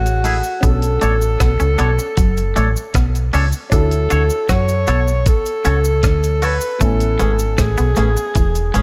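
A breathy, intimate alto saxophone sings the melody up front with light vibrato and scooped notes in this smooth, bittersweet lovers rock reggae excerpt, joined from the start by a twangy guitar riff, a background baby grand piano, and a round, punchy dub bass. A gritty, sampler-style drum kit with a thumpy kick, hi-hat and rim click enters at 0.1 seconds alongside a dry cabasa tucked behind, while a second clean guitar adds stabs from 0.2 seconds. Tape echo trails the saxophone, the riff guitar and the drums, studio reverb surrounds the mix, and the harmony moves from F#m9 through Bm9 and Dmaj7 to Amaj9.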